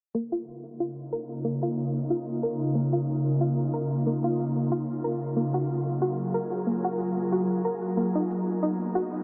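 A soft, round synth pluck opens this short excerpt at 0.1 s, spinning gentle arpeggios through a mellow blend of detuned triangle, sine and sawtooth tones with a faint noise layer, a touch of chorus and an analog delay. It sits up front in a smooth, blissful sunset chillout groove at 92 BPM in 4/4, with a light swing on the sixteenths and a filter sweep running across the arpeggio. A very quiet electronic shaker, layered and re-recorded in a small room, slips in just after, and at 0.9 s an ethereal, airy pad arrives with sustained chords built from detuned sawtooth and triangle voices in unison, its slow attack and long release softened by ensemble chorus and built-in reverb. The harmony, rooted in Db mixolydian, moves from Db69 to Gbmaj9 at 5.4 s and Cbmaj7 at 8.0 s. The whole mix is dreamy and soaked in a huge ambient reverb, with a low-pass filter lending it a hazy, cushioned glow.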